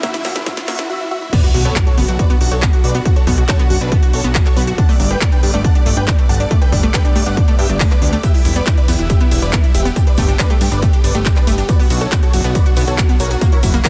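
A heavy, up-front electronic kick drives this 139 BPM uplifting trance excerpt in B minor, its tape-tinged layers sitting beneath a driving, euphoric drop that lands at 1.3 seconds after a brief build-up with a drum fill and a very quiet riser. A huge, bright supersaw lead carries the melody, its detuned unison sawtooths shaped by a moving notch, compression, delay and sidechain pumping. Underneath, a fat, saturated analog bass pumps in time with the kick through a high-pass filter, while a round, filtered analog pluck spins chorused arpeggios with tape echo in the background, and a lush, very quiet unison pad holds sustained chords. The techno kit adds a cracking, softly clipped snare, smooth hi-hats, ride, crash and handclaps, and a grainy egg shaker returns from 8.2 seconds. The harmony moves from F#7 into Bm, Gadd9, Em7 and Gadd9 again before resolving back to Bm, all within a dense, heavily limited modern master.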